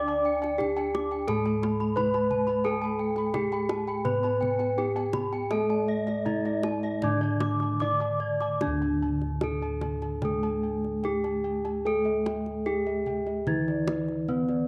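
An up-front bronze metallophone struck with a wooden mallet carries the melody in this serene, shimmering Javanese gamelan excerpt in D pelog barang, moving in a straight 4/4 at around 74-87 BPM. Beneath it, a dark, smooth metallophone played with padded disc mallets holds the accompaniment, while soft, airy bossed gongs with padded beaters spin arpeggios, round, beating bossed gongs anchor the bass, and a tight, close kendang enters at 0.4 seconds. A dry, close-miked, full-toned metallophone with paired tuning adds ringing high arpeggios until 8.6 seconds as the piece turns to a new section, all set in a wet spring reverb with studio ambience.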